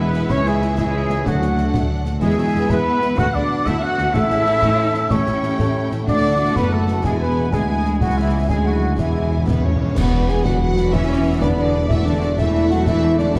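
Heroic adventure film score in a soaring, adventurous mood, moving at 124 BPM in a straight 12/8 in E mixolydian, with a smooth, vibrato-rich violin section carrying the melody alongside an airy, hollow flute line, lush background violins and violas, and mellow horn chords, while a thumb-plucked harp rings softly beneath. Tight, dark trumpet stabs punctuate the texture until 9.5 s, and the low end rests on focused cellos, woody double basses and a dark tuba, with bright-cymbaled snare, bass drum and clashes behind, a dark cymbal swell building from 6.1 s, and round soft-mallet timpani playing a fill from 9.0 s into a full-band accent at 10.0 s. The orchestra sits in a moderate scoring-stage reverb with a dark, warm production, and this passage is cut from a longer piece.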